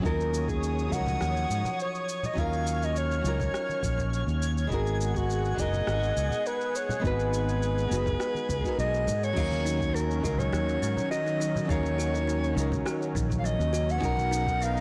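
Fingerpicked nylon-string guitar with audible finger squeak, a lush detuned pad treated with chorus and phaser, an up-front growly fretless bass and a soft electronic kick open this wistful sunset chillout excerpt in Eb minor at 103 BPM, moving from Ebm7 to Abm7. A breathy, intimate soprano saxophone carries the jazz-style melody with vibrato, scooped notes and tape echo, over a smooth R&B kit of rim click, shaker and crash, close congas and bongos, and a twinkling granular shimmer in the background until 9.4 seconds. At that point a woody kalimba takes up delayed arpeggios, and throughout, the whole mix sounds blown-out and overdriven.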